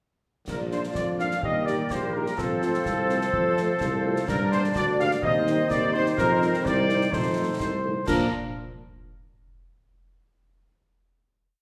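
A festive, spirited military-style march for wind band in Bb major at 126 BPM in 2/4, with a warm trumpet section carrying the melody up front while a woodwind section with light vibrato plays a second line of sustained chords and clear trombones hold chords in the background. A vintage-sounding tuba with light vibrato anchors the bass on the beats, a very quiet, dark French horn section enters at 0.7 s with smooth after-beat chords, and a marching snare rides over a bass drum on the beat with dark clash cymbals. The short piece moves through Eb, F, Gm and F7 before landing on a final Bb chord at 8.1 s, heard from further back in a reverberant recital hall.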